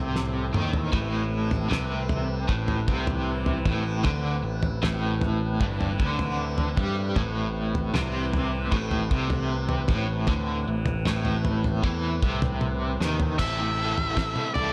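Light reverb and a small-room ambience surround this hypnotic, mysterious stretch of psychedelic rock in a straight four-four feel, cut from a longer piece. A bright, double-tracked overdriven electric guitar sits up front with a picked riff colored by tremolo, while a round, overdriven picked bass carries the low end. Behind them, a lightly overdriven tonewheel organ holds sustained chords through a slow rotary speaker with chorus vibrato, key click and third-harmonic percussion, and a softly plucked tanpura adds a buzzing, shimmering drone. The cloth-damped, thuddy drum kit enters at 0.2 seconds with dark cymbals, a fat snare, a tight kick, crash and toms, its top end rolled off, and drum fills mark both the opening and the approach to the change at 13.4 seconds. There the harmony gains an added ninth, and a dark octave-fuzz lead guitar comes forward with a short, distorted picked melody trailed by tape echo.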